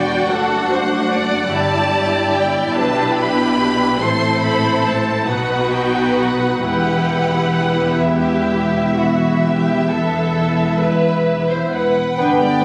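Captured on a phone in a wet scoring-stage space, this yearning, elegiac romantic orchestral movement unfolds in a rubato 12/8, with rich violins carrying the soft-attack melody with vibrato above a lush, up-front second violin line, smooth, even violas, an expressive cello section with portamento and a bowed double bass section, until a mellow bassoon, a warm clarinet in the background and a dark French horn section enter at 12.2 s, just before the cut ends at 12.6 s.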